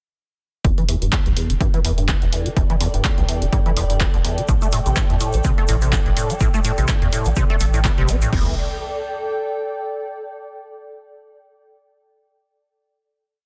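Four-on-the-floor kicks from an overdriven, punchy analog drum machine, with toms, crash, programmed hats and a clapped backbeat, drive this gritty acid house piece, where a squelchy, resonant acid line full of accents and slides runs through a filter sweep over a round sine sub bass, a cloudy granular pad drifts in behind, a grainy egg shaker joins at 4.5 s, and the pad's blurred final chord rings on alone from 8.6 s until 10.2 s.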